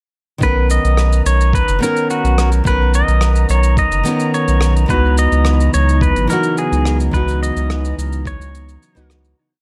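A twangy pedal steel guitar carries the melody in this short sunset chillout piece, its clean, fingerpicked slide lines unfolding as motif-based period phrases with volume swells and trailing tape echo. Set at 107 BPM in 4/4 with a straight feel in C# dorian, the groove rests on a round, sine-like sub bass placed up front in a dotted rhythm, while a gritty, overdriven electronic kick thumps softly in the background and a brushed shaker and rim click add a light lounge beat. A full-bodied nylon-string guitar fingerpicks classical drop2 voicings, holding chords with syncopated pushes that repeat through dub echo, moving from Bmaj9 to C#m11 at 4.9 seconds. A dark, wind-like tuned noise texture holds a high note from 0.8 seconds in its own reverb, and an airy, breathy pad with chorus enters at 5.4 seconds to sustain soft chords. The smooth, echo-heavy mix sits in a small room with light reverb, and the whole piece fades out from 6.4 seconds to its end at 9.4 seconds.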